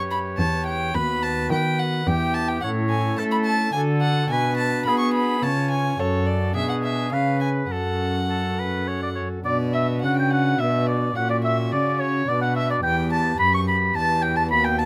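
A grave, solemn baroque-style sonata movement in triple time opens with all four players sounding together from the start: a clear, present oboe carrying the melody, a violin with a reedy gut-string tone on the second line, a cello as the bass, and a pipe organ filling in the accompaniment on its foundation stops. The oboe sings in a classical style, while the violin, played by one bowed player in period style, sits up front and close with a rich, full body. Beneath them the cello, also a single bowed period player with a nasal gut-string colour and light vibrato, anchors the bass, and the organ adds a thick, romantically voiced cushion of sound. The harmony moves through minor chords and dominant sevenths, settling on a new tonal centre at 9.5 s as the opening idea returns. Recorded with close, detailed microphones and little reverb, this 14.9-second excerpt is cut from a longer piece.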